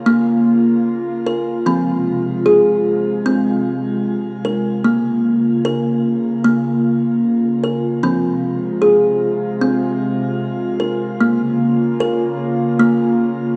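A straight 4/4 pulse at 75 BPM carries this meditative, gentle world piece in Bb minor, a short passage cut from a longer work. A warbly, tape-like pad sits up front, holding sustained chords from C3 to F4. Its detuned sawtooth and triangle tones are colored by ring modulation, chorus, built-in reverb and a shimmer reverb, and slow attacks and long releases give it a dark, nostalgic, lo-fi haze. Beside it, a kalimba plays arpeggios between F3 and Bb4 with short thumbnail plucks, sounding woody, hollow and vintage, with a band-limited character and its own shimmer reverb. The harmony moves between Bbm and Fm, and both parts play through the full 13.6 seconds, set in a wet echo chamber with a 2.5-second decay.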